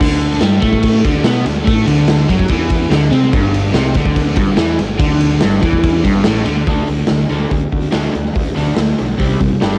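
From the first beat, a crunchy, double-tracked overdriven guitar riff, a fuzzy fingered electric bass and a raw, punchy garage drum kit with crash, ride, hi-hat and a medium-tuned snare kick off together at 144 BPM in straight 4/4, driving a rowdy D mixolydian garage rock excerpt over D5 and G5 chords before a new section arrives at 6.7 seconds and reaches C5 at 9.2 seconds, with the gritty, top-rolled drums in a pumping stone room and the picked guitar both sitting up front in a dry, home-cassette sound.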